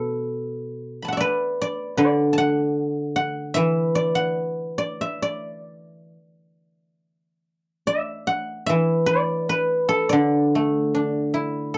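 In a free, rubato 4/4 feel, this short excerpt of traditional Chinese solo plucked-string music unfolds with a pastoral, elegant character. A lone guzheng, picked with fingerpicks and sitting up front, carries the entire 11.8 seconds, its bright, silvery tone ringing across a span from low to high. The close, dry 1970s-style studio sound adds only light reverb, and the music shifts into a new section at 7.0 seconds.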